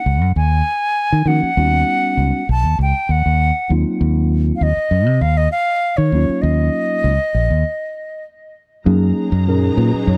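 A breathy, tongued concert flute opens this driving, funky jazz excerpt in Eb minor at 99 BPM, joined almost at once by a punchy, up-front fingered electric bass and, from 1.3 s, a mellow tine electric piano with lush chorus, before a stop at 7.7 s breaks at 8.9 s with the entry of a softly attacked symphonic string section with vibrato on a Gb69 chord, all in a dry, close 1970s-style studio sound.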